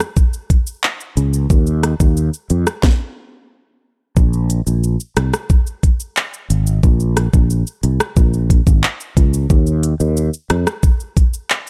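Sultry and tough, this short dancehall cut at 90 BPM pairs an up-front electronic island pop drum kit, with its knocking kick, sharp snare, smooth hats, handclaps, rim click and shaker, against a growly, sustaining fretless electric bass with analog chorus that enters at 1.2 seconds, the dark, dry production pausing for a stop from 2.8 to 4.2 seconds before the groove resumes.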